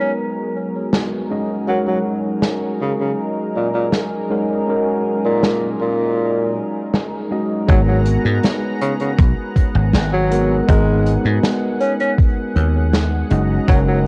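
Home-cassette sound and a moderate spring reverb wash over this nostalgic, woozy vaporwave fragment, where a breathy, subtone tenor saxophone sings a mellow pop-style melody over a clean tine electric piano and a thick, detuned unison pad carrying a filter sweep through the opening 7.7 seconds, as an unplugged kit brings hi-hat and bundle-stick snare before a punchy, foam-muted thumbed slap bass and an overdriven, thumpy electronic kick arrive up front at 7.7 seconds, all cycling between G#m9 and F#69 chords.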